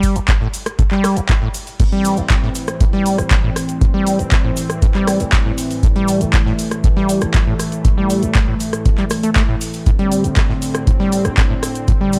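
A dark, warm production with light reverb frames this gritty, raw acid house excerpt at 119 BPM in A minor, where a squelchy, resonant sawtooth acid bass riff, roughened by overdrive, analog chorus and tape echo, sits up front beside a deep, tape-warm electronic kick. A punchy analog drum machine supplies crash, handclaps, hi-hat and rim click, while a grainy cabasa sits close and dry in the background. At 1.8 seconds a lush, thick unison pad enters holding detuned, evolving chords with sidechain pumping, and a very quiet, compressed breakbeat kit adds hi-hat, a medium-tuned snare and tambourine.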